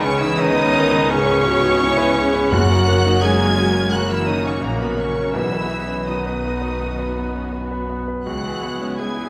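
At a rubato 84 BPM in 4/4, this uplifting, moving cinematic passage in B major unfolds over chords moving from C#m7 through F# and B before returning to C#m7. A lush violin section carries the high melody with vibrato and a focused, smooth top, while a second, more distant violin section and a soft-attacked clarinet with a vintage, classical character trace second lines beneath it. A clear, intimate baby grand piano supplies accompaniment with long sustain and audible action noise, joined in the background by a symphonic viola section. Mellow, tight French horns hold sustained chords until 7.9 seconds, and an intense cello section and an even double bass section anchor the low end. Very quiet, articulate timpani struck with hard mallets appear between 2.5 and 6.4 seconds, sounding close and dry against the reverberant recital-hall ambience of this excerpt from a longer piece.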